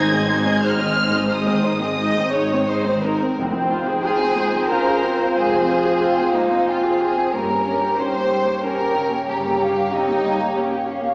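Cinematic, emotional film score in F minor, a moving and sorrowful excerpt in 3/4 that drifts with rubato at around 85-95 BPM. A distant, lush violin section carries the melody with vibrato and portamento, set behind a smooth, up-front second violin line, expressive close violas, ringing fingerpicked harp arpeggios, and a woody cello section with bowed double basses holding the bass. At 3.4 s a mellow, airy flute section and a clear solo clarinet add second lines, dark, roomy French horns sustain chords, and hard-mallet timpani sound briefly, while the whole ensemble sits in a wet scoring-stage reverb heard from further back, as if through a small speaker.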